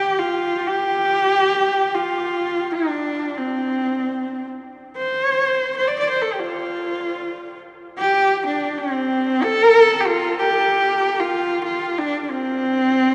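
Mongolian folk in a galloping yet vast mood, this 13-second fragment from a longer piece features a lone, up-front horsehead fiddle, bowed on horsehair strings with a husky, focused tone, singing vibrato and sliding portamento, set in a long cathedral reverb with a softened top end and shifting into a new section at 9.4 seconds.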